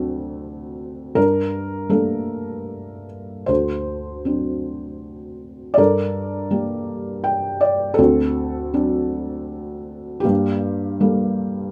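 Classical solo piano, wistful and reflective, with a felt-muted upright in 3/4 played with lyrical rubato over alternating D7 and Gmadd9 chords, its soft, dark, thick-felted tone sitting up front and intimate with audible action noise under close, detailed microphones and light reverb, plus a brief fill at 6.9 seconds in this short cut from a longer piece.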